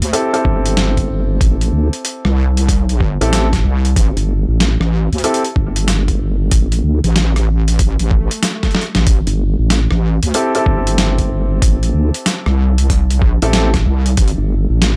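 A heavy, up-front wobble bass built from square and sine tones drives this swaggering, funky glitch hop excerpt, its detuned, resonant sound thickened by chorus and tube saturation. Alongside it runs a darker, nasal second wobble bass whose formant filter gives it a vowel-like sweep, also with chorus. The beat moves at 94 BPM in 4/4 with a 64% swing on the 16ths, and both kits are sampler-style, compressed, pitched down and overdriven: a thumpy electronic kick, plus a boom bap set of hi-hat, rim click and a medium-tuned snare placed up front. A warm grand piano adds stabs over an Am7 harmony in A minor pentatonic, colored by sidechain pumping and tape echo; it plays from 0.1 s, drops out, and returns at 10.3 s. Around 8.1 s a background electronic swell appears alongside a short drum fill. The mix has a dry, gritty hardware character with a digital ambience.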